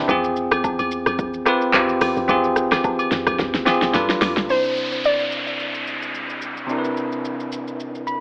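A bell-like tine electric piano rings bright and clean up front through this relaxed, soulful amapiano excerpt at 109 BPM in 4/4, its 16ths swung at 55% and its tuning set to A4 = 435 Hz. Alongside it, a deep house drum kit hits up front with a punchy kick, fat snare and metallic hats, its overdrive giving the layered electronic beat a gritty edge, while agogo bells and woodblock add close, acoustic color until about 4.4 s. A dark, round log drum bass with a fast attack and decaying tail sits in the background over Fm and G7, stopping at 4.5 s after a drum fill. There the music lands on Cmaj9 as a soft, nasal pluck carries a short melody dressed in chorus, phaser and digital delay, and a downlifter sweeps in to close out the passage, capped by a brief electric piano fill. Light reverb and digital ambience surround it all, and the whole mix has the narrow, filtered tone of an AM radio.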